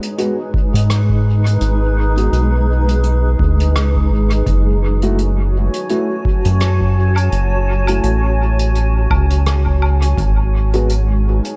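A granular, cloudy pad with built-in reverb and a distant, roomy brush kit of hi-hat, rim click and woodblock with dub echo open this hazy ambient dub excerpt in F# minor at 84 BPM, with a gentle 16th-note swing. A dark, woody upright piano adds boxy stabs with dub echo from 0.2 seconds, an analog electronic kick arrives at 0.5 seconds, and a round, up-front sawtooth-and-sine bass enters at 0.7 seconds to anchor the low end. Over a small room ambience, the chords move from G#m to F#m and settle on G#m7 near 10.2 seconds.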